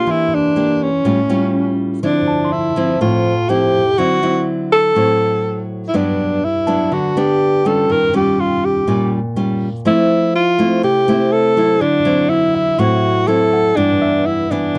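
Bossa nova at 123 BPM in 4/4, smooth and wistful, this short cut from a longer piece features a breathy alto saxophone up front, playing a jazz-style solo melody with vibrato and scooped notes, alongside a bright, classical-style fingerpicked nylon-string guitar with audible finger squeak. In the background, a worn, slightly out-of-tune tine electric piano sounds through its built-in speakers from 0.1 seconds, as the harmony moves from Em7b5 and A7b13 through Dm9, Gmaj7, Eb9 and Fmaj7 before settling on G6. The sound is a dry, close 1970s-style studio recording touched by light reverb.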